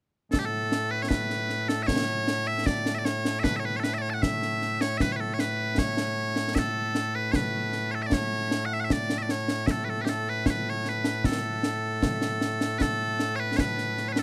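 This is a short cut of Scottish traditional pipe music in A major, with a ceremonial, proud mood at 77 BPM in a straight 2/4 metre. Loud bagpipes carry the melody from 0.3 to 14.2 seconds, a piercing, continuous solo voice placed up front and spanning A2 to A5. Concert snare drum and concert bass drum play across the same span, acoustic and close, with bright cymbals colouring their sound. The tuning sits slightly below standard pitch, with A4 at 439 Hz. The recording is dry, with little reverb, and the single strain repeats at 12.8 seconds just before the cut.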